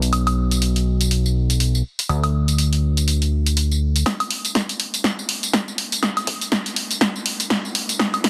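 A plucky, funky analog bass with tube saturation and sidechain pumping opens this energetic, soulful piano house cut at 122 BPM with a 16th-note swing, sitting up front beside a dry, overdriven analog drum machine of hi-hat, punchy snare, tambourine and woodblock until the bass stops at 4.0 seconds and a background electronic kick enters at 4.1 seconds for a build-up and drum fill, all in light digital ambience with a dense, heavily limited master.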